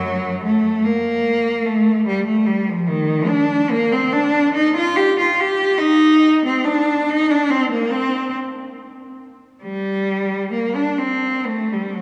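A lone cello, bowed by one player, carries this mournful, yearning classical fragment, cut from a longer piece and lasting 12.0 seconds. Its tone is clear and smooth, with a singing vibrato and an even line that sits up front yet carries a distant quality. The music moves freely in G minor, in a slow 6/8 at about 47 beats per minute counted in dotted quarters, with uneven beats and expressive rubato. The cello's range spans F#2 to G4, taking in both dark low notes and a plaintive upper voice. A wet church reverb, lingering about 3.2 seconds, wraps the instrument in a resonant, cavernous space.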